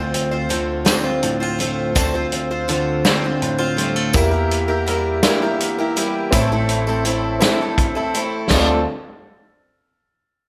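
A loose indie drum kit with a punchy kick, snare, hi-hat and crash sits up front in this bittersweet, stirring indie folk excerpt in 6/8. Alongside it play a shimmering, octave-doubled twelve-string acoustic guitar, a woody pizzicato upright bass, a jingly tambourine tucked in the background, and a full-bodied fingerpicked jumbo guitar that gives way at 4.1 seconds to a warm grand piano as the arrangement builds within light reverb and small room ambience.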